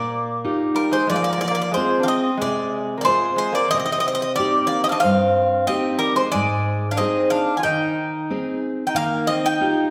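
A brilliant, metallic Greek bouzouki carries the melody up front, its picked double strings ringing with octave-doubled sparkle, while a second, mellower bouzouki plays a lower line beneath it. A dark, full-bodied nylon-string guitar fingerpicks deep classical accompaniment through chords moving from Ebadd9 through Fm, Cm and Ab, giving this Greek folk passage a bittersweet, moody cast in a straight 4/4. The trio sounds as if played in a church or concert hall, with a wet recital-hall reverb lingering around the playing throughout this short cut from a longer piece.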